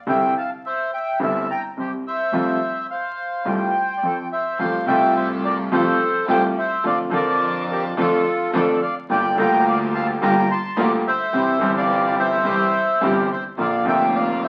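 Played rubato at 106 BPM in 4/4, this elegant, passionate tango in F major is cut from a longer piece, with a dark, airy bandoneon carrying the reedy melody up front over a brilliant grand piano accompaniment with short sustain and a smooth, distant bowed double bass with vibrato in the background. At 4.6 s a chamber string section with a gut-string, period-style tone enters with bowed stabs, as the harmony moves through Dm/F, Gm7, C and Bb. The sound sits in a wet studio reverb and carries the crackle of a very old 78 rpm record.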